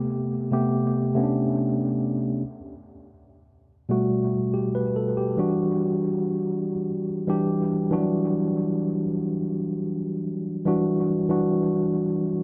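R&B excerpt at 71 BPM in E minor with a sensual, longing mood, carried by a lone mellow tine electric piano that sits clean and up front, its dub echo trailing through a light reverb and echo-heavy mix as it moves from Am9 to Gmaj9 at 2.4 seconds and settles on Em9 at 5.4 seconds.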